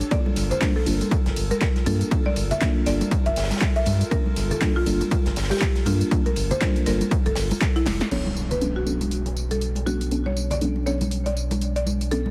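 Deep house at 120 BPM with a swung, hypnotic groove, where an overdriven electronic kick up front, a punchy analog drum machine, a tight funk kit in the background and ringing congas support a round, deep analog bass and sidechain-pumped, nasal chord stabs moving from Gm9 to Bm9 at 8.1 seconds, while a buzzing, woody marimba melody with 12-bit grit and tape echo floats over a hollow, flute-like pad, the kick drops out after 7.7 seconds, and an electronic impact sits in the background of a dense master laced with vinyl crackle.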